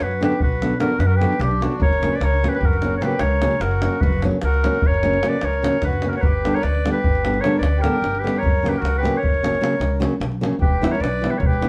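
Heard from further back in a reverberant studio, this fiery, restless Balkan wedding-band piece is cut from a longer performance and moves in a straight 11/8. The bright clarinet, present and classical in style, carries the solo melody up front with slapback echo and plate reverb. A reedy, mid-forward accordion plays a second line beneath it, while a fingerpicked acoustic flamenco guitar adds warm accompaniment from 0.2 seconds. The upright bass is played pizzicato on gut strings and sounds woody, dark and thumpy, and a tight davul with a small-room sound handles the percussion from 0.1 seconds. The harmony moves from Bm to F#, then shifts at 6.2 seconds into a second section that runs through G and F# to Em.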